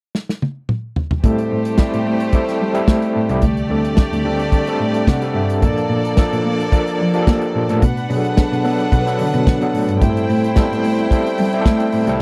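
Glamorous, sultry disco cut from a longer piece, opening with a fill from a dark, punchy soul drum kit alone before a lush bowed violin section, a gritty, barky electric piano with medium tremolo through a combo amp (adding its own fill at 4.8 seconds), and an intimate, softly bowed cello bass enter together at 1.2 seconds over an Am7 to D7sus4 to Bbmaj7 to Bm7 progression, all captured in a dry, close 1970s-style studio sound.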